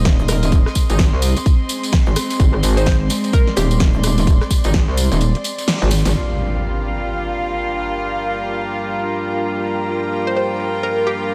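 A swung 128 BPM bass house groove in 4/4 drives this bouncy, aggressive cut from a longer piece in G phrygian, built on a punchy, up-front electronic kick layered with a house kit of punchy snare, rim click and bright hats under low-pass filtering, plus a very quiet, dry 70s kit and a jingly, close tambourine. A metallic, saturated wobble bass with chorus, overdrive and sidechain pumping sits up front over an Ab chord, while a reedy chamber string section with gut-string tone and light vibrato pumps softly underneath. A hollow, detuned square pluck flickers through with cassette tape grit and analog delay, and a distant, roomy horn section enters at 0.9 seconds with filtered, delayed stabs. The kick drops out near the end of the first half before a band accent and drum fill lead into an electronic impact at 6.1 seconds. There the harmony moves to Gm7 as a deep, moody analog pad with a nasal edge and slow attack takes over beneath the strings, horns and house kit, all set in a small, lightly reverberant room.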